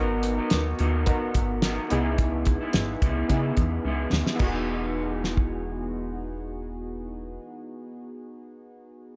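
Hazy and sunny, this short indie pop and bedroom pop cut from a longer piece moves in a straight 4/4 feel, tuned a touch low at A4 = 435 Hz. Up front, a cloth-damped acoustic drum kit sounds thuddy, with a fat snare, tight kick, hi-hat and crash cymbal under a rolled-off top. The kit plays a fill from 3.8 to 4.4 seconds as the harmony moves from G#m7 and C#m7 to Emaj7. A plucky analog bass, built on sawtooth and pulse waves, gives punchy, funky notes with a fast attack and a moving notch. Round, detuned analog keys add a filter sweep through chorus and plate reverb, while an electric guitar through a small old amp plays a picked, slightly broken-up, lo-fi accompaniment soaked in lush chorus and warbly pitch drift. The mix sits in a moderate small room with a dark production.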